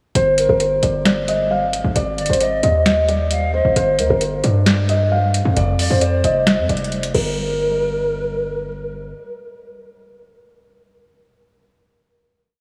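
A dreamy mix soaked in huge ambient reverb, with a hint of small-room ambience, frames this short, dark and melancholic trap piece in G phrygian at 133 BPM, felt in half-time. A felt-muted upright piano carries the looping melody, its thick, intimate tone dulled by a low-pass filter and trailed by tape echo, repeated like a sampled loop. Behind it, a distant pan flute with a pure, wooden voice, breathy chiff and vibrato adds a sparse, expressive counter-melody, also echoed on tape. Up front, a booming analog drum machine plays a dry half-time beat with a deep kick, tonal snare, metallic hats with fast rolls and a crash, while a punchy, heavy 808-style bass holds long sub notes with pitch slides. The hook moves from G7(no3) through Ab5, G5 and F5 to Gm, and the drums drop out at 7.2 seconds as a final hit rings out to 11.0 seconds, with the bass decaying until 9.1 seconds.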